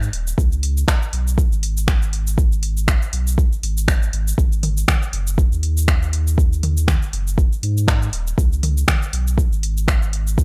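Spiritual and driving, this short afro house passage, cut from a longer piece, moves at 120 BPM in 4/4 with a 56% swing on the sixteenths, set in G# minor and tuned to A4 = 441 Hz. A warm sub bass sits up front from the start, round and sine-like with a fast attack and sustained, mellow tone, ranging from D#1 to G#2 and pumping under sidechain compression. An electronic, produced afro-pop drum kit runs throughout, its finger snaps, metallic hi-hats, shaker and toms placed in a small room reverb. A deep electronic kick drum joins at 0.4 s, up front and sharing that same small room ambience. The overall sound stays dry, remaining within a single section for the full 10.4 seconds.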